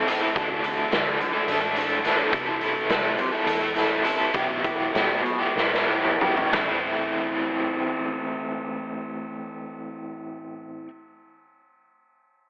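An overdriven electric guitar and a muted picked bass open this dark, trippy slice of psychedelic rock in 7/8, with a raw garage drum kit joining at once. The double-tracked guitar sits up front playing a bright, scooped riff soaked in tremolo, while the round, foam-muted bass stays dark and amped in the background. The drums have a gritty, saturated punch, with a medium-tuned snare, hi-hat, ride, toms and a pumping stone-room ambience. The whole mix carries a telephone-like tone and an echo-chamber reverb. The harmony moves from Dsus2 through Am/C and Em/B as the music slows, and a drum fill at 5.6 seconds closes the opening passage. The drums stop at 6.7 seconds, leaving guitar and bass to settle on A minor until the cut ends.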